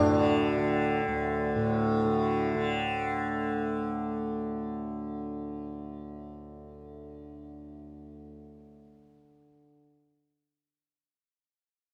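Serene and devotional, this brief excerpt from a longer Indian classical piece unfolds in a straight seven-beat metre. A softly plucked tanpura sits up front, holding a shimmering drone between D2 and D3 for the full 9.7 seconds. In the background, a plectrum-plucked sitar sounds its melody around D4 with a buzzing tone and ringing sympathetic strings, falling silent at 3.0 seconds. From there the tanpura carries on alone, its warm acoustic resonance filling the remaining time. A moderate studio reverb lends the recording a gentle sense of space.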